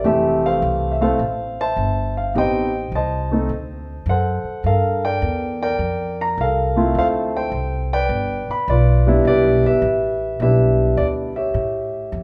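Late-night and moody, this short jazz piano trio passage swings in 4/4, with a warm concert grand piano carrying the melody up front, its deep low end rich beneath the tune, across the full 12.2 seconds. A woody, growly pizzicato upright bass on steel strings sits just as close, holding down the bass line throughout as the harmony moves from Fmaj9 through Am7b5 and D7b9 to Gm9, then on toward a closing A7. The band plays live together in one large studio room, and a moderate reverb lends the sound a spacious glow.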